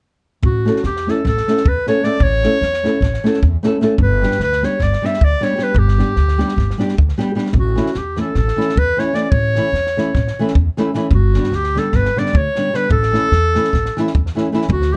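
Woody, thumpy pizzicato upright bass on gut strings and a compact cocktail kit with a punchy kick and high-tuned, dry snare open this exuberant, wild Balkan wedding-band dance in 9/8. A clear, classical-style clarinet enters almost at once, carrying the solo melody up front in plate reverb, and a small, thumb-plucked nylon-string guitar follows moments later, its finger squeaks audible, while the harmony swings between A and G. The production is dark and warm with a light room sound, and the passage is cut from a longer piece.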